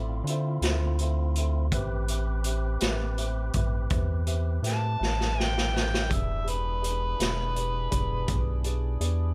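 A dark, mellow grand piano sits in the background beside a fat tonewheel organ with overdrive and a slow rotary speaker, over an up-front, rubbery square-wave bass, as this mournful, brooding slow blues in A minor at 55 BPM in 12/8 begins. A raw, saturated garage drum kit with a boomy kick joins at 0.3 seconds. At 4.7 seconds an amplified, gritty harmonica with digital delay, scooped notes, tongue slaps and light vibrato takes the melody, and the drums play a fill from 5.0 seconds, all in a dry, close sound.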